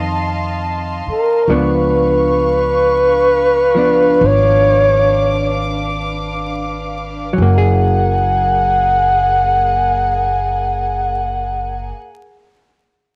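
A breathy, whispered flugelhorn sings the melody up front from 1.1 seconds in this intimate, late-night jazz ballad cut from a longer piece, over dark, clean hollow-body electric guitar accompaniment, sustained bowed chamber strings played sul tasto with light vibrato, and woody pizzicato upright bass touched by transformer saturation, the swung pulse slowing down through the first 7.4 seconds within a small, lightly reverberant room and a homemade cassette sound flecked with vinyl crackle.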